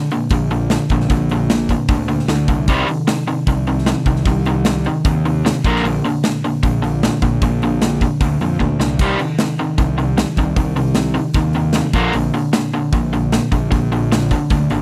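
A dry, close recording in a 1970s studio style, with little reverb, gives this cool, moody indie rock excerpt an immediate, in-the-room feel. An overdriven electric guitar opens at 0.0 s with a dark, scooped, picked riff sitting up front between Bb2 and Bb3. A big acoustic rock kit joins almost at once, its crash, hi-hat, medium-tuned snare and tight kick ringing in a bright stone room. A fuzz-laden picked bass enters at 0.3 s, round and amped, moving between Ab1 and F2. At a straight 152 BPM in 4/4 and in C minor, the harmony moves between Bb and Cm, and a drum fill at 8.6 s leads into a second pass of the same section that runs to the cut at 14.8 s.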